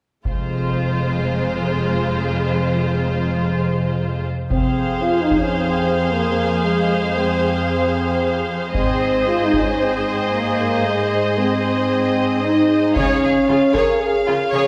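A dark, heroic orchestral film cue in F minor opens at 0.3 s with bowed string sections and a solo taiko struck with hard sticks, its hits compressed and saturated. At 114 BPM in straight 4/4, distant symphonic violins carry the melody over a second violin line, while lush violas fill the accompaniment and smooth cellos hold the bass, all three bowed with even vibrato. A woody double bass section reinforces the low end through the opening and returns in brief passages. From 4.5 s a French horn section sits up front with sustained chords, its dark, soft-attacked, roomy tone adding weight as the taiko returns in short bursts. The harmony moves from F minor to Ab at 8.8 s and then to Db, and a wet scoring-stage reverb places the orchestra further back, giving this fragment of a longer piece a grand, cinematic scale.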